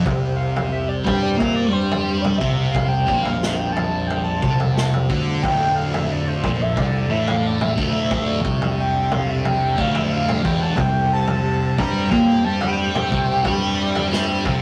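A rough rehearsal-room sound fills this trippy, hypnotic psychedelic rock excerpt, with a moderate stone-room reverb around the band. Up front, a thick, double-tracked fuzz guitar plays the riff through distortion and phaser, while a picked electric bass with overdriven fuzz sits in the background beneath it. A tonewheel organ holds sustained chords with key click, vibrato and a slow rotary speaker, and a vintage acoustic drum kit with a punchy kick, medium-tuned snare and toms keeps a straight feel with a rolled-off top. From 0.4 s, a shimmering, nasal pulse-width synth lead carries the melody as a solo, bright and retro, with chorus and vibrato. At 5.4 s a softly plucked, buzzing tanpura drone enters in the background as the harmony moves from C5 to Dmadd9, before returning to C5 at 10.8 s.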